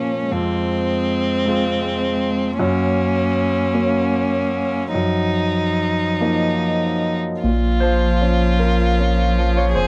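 A baby grand piano, a solo violin and a solo cello begin together in this melancholic, reflective neoclassical piece, cut from a longer work. It moves slowly and freely in 6/8 at 48-54 BPM, counted in dotted quarters, in Bb minor. The up-front piano has a warm, natural tone with long sustain and carries the accompaniment through Fm, Gb and Ebmadd9/Gb. The violin sings the melody in a clear, smooth, even voice with vibrato, also placed up front. Beneath it, the bowed cello adds a rich second line with light vibrato and a smooth top. At 7.4 seconds the harmony settles on Bbm as a deep, clean sine sub bass enters, sustained and dark with a fast attack. The sound is dry and close, like a 1970s studio recording with little reverb.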